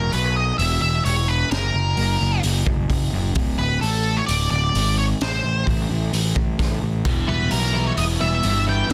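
Quiet-loud alternative rock at 130 BPM in a half-time 4/4 feel, brooding and cathartic, cut from a longer piece and moving through E5, F#, D5, Am and Em. An up-front octave-fuzz lead guitar carries the melody with distortion and analog delay over a dark, round fuzz bass and a gritty, saturated garage drum kit with a high-tuned snare, punchy kick and pumping small-room sound. At 7.0 seconds a biting overdriven guitar riff enters in the background, joined at 7.3 seconds by bright, twangy twelve-string arpeggios with subtle chorus, in a mix with light reverb and a dense, heavily limited master.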